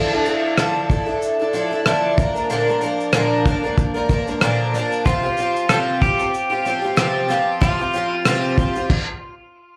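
A lightly swung sixteenth-note feel in 4/4 drives this sunny, carefree acoustic pop passage, cut from a longer live club performance heard through the venue's PA with a plate reverb. A shimmering, double-tracked twelve-string acoustic guitar with slapback echo carries the Dmadd9, Bb and Csus4 chords up front from the start, over a cloth-damped, muffled drum kit with a tight kick, rim click, shaker and crash. A twangy pedal steel guitar with delay enters at 5.1 s as a second line. Both guitars drop out at 8.9 s, and the drums follow at 9.1 s into a brief stop.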